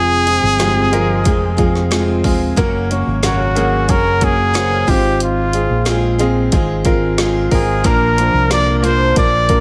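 A straight 4/4 pulse at 91 BPM drives this short, anthemic and hopeful slice of piano-driven pop, cut from a longer piece and tuned to A4 = 439 Hz. The drums, an electronic, layered deep house kit with a punchy kick, woody snare and shadowy hi-hats, come in at 0.3 s, while a fingered electric bass runs through an envelope filter with an amped, round, dark tone. A clear, vintage-sounding upright piano supplies the accompaniment, and a bright, full-bodied picked steel-string acoustic guitar plays a riff alongside it. Up front, a close-miked trumpet carries the solo melody in a pop style, its warm tone shaped by vibrato and scooped notes. The harmony moves from Fm to Gb, then Fm/Ab and Bb, all set in light studio reverb.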